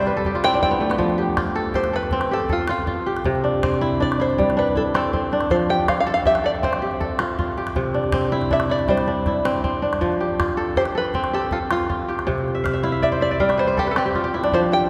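West African traditional string and xylophone music in a hypnotic, warm 12/8 at 106 BPM in F lydian, cut from a longer piece, where an up-front, crisp, ringing kora spins arpeggios and fills at 0.0 and 12.6 seconds, a twangy, plunky fingerpicked open-back banjo carries the melody throughout, opening with a brief solo, and a small calabash keeps up percussion over alternating C and F chords, all bathed in a long church reverb.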